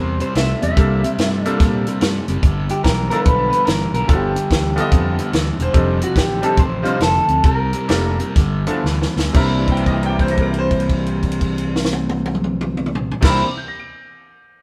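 This electric blues shuffle in C mixolydian, cut from a longer piece, feels rollicking yet laid-back, swinging in 4/4 at 116 to 145 BPM. An electric guitar through a small old amp carries the picked melody with a compressed, slightly broken-up tone. Beneath it, an overdriven semi-hollow guitar plays a riff bathed in spring reverb. A punchy, amped fingered bass and a compact cocktail drum kit drive the groove; the kit sounds dry and up front, with dark cymbals, a high-tuned snare and a tight kick. A bright grand piano with long sustain and audible action noise supplies accompaniment, while a woody upright piano with short sustain adds a second line in brief spots, returning at 9.7 seconds. The band slows from 5.7 seconds through a drum fill, then settles onto a held note over a C9 chord from 9.3 seconds, playing together live in a stone room with moderate reverb.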